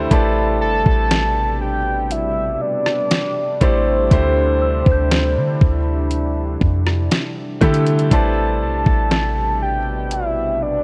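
A clear baby grand piano opens this slow, late-night contemporary R&B fragment, its intimate tone carrying audible action noise and long sustain, over a deep, moody ambient pad with slow attack, chorus and built-in reverb, and a boomy, clean 808-style sine bass sitting up front. At 0.1 seconds a crisp 8-bit drum machine joins with a thumpy kick, fat snare, hi-hat and rim click, its sampler-style hits overdriven and prominent. A soft, octave-layered synth lead carries the longing melody, its round triangle and sawtooth tone thickened by a sub octave and shaded with chorus, tremolo, phaser and vibrato. High above, a very quiet celesta adds delicate, bell-like touches from soft felt hammers. The harmony moves from Am11 to D9sus4 and back, and the whole passage is coloured by light reverb and a worn, warbling cassette-tape pitch drift.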